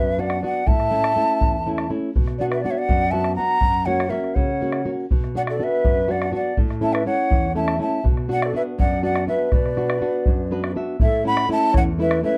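A large quena opens this melancholic yet festive Andean folk excerpt in 6/8 with an airy, tongued, vibrato-rich melody up front, joined by a second, mellow large quena with straight tone, soft attack and rolled-off highs, while a thumb-plucked nylon-string guitar, finger squeaks audible, accompanies in a classical style. A deep, close bombo enters at 0.3 s, and the guitar adds a fill from 10.3 s before the harmony moves to A at 11.0 s as a new section begins. The dark production places everything in a wet small room.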